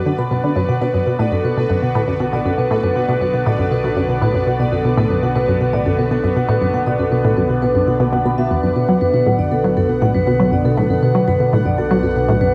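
Ambient, sequencer-driven space music with a mysterious, expansive mood, where a squelchy, resonant blip pluck riff and a metallic, ringing vibraphone arpeggio sit up front over sustained chords from a lush, detuned unison pad, a bubbling stepped-filter texture and a fat analog bass in the background, the pad, bass and texture all fading in across the whole 12.5 seconds, within a dark production and moderate plate reverb.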